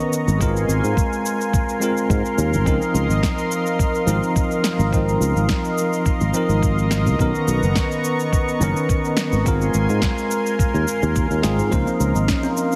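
A growly, up-front fretless electric bass anchors this sunny, relaxed sunset chillout excerpt in Db major at 106 BPM with a light 16th-note swing, alongside a bell-like tine electric piano with delay, a lush detuned pad with chorus, a punchy layered cabasa and snare, a gritty thumpy kick, and a brief woody kalimba with delay entering at 11.7 s, all set in light digital reverb with a heavily compressed radio sound as the chords move from Ab69 through Dbmaj13 and Cbmaj9.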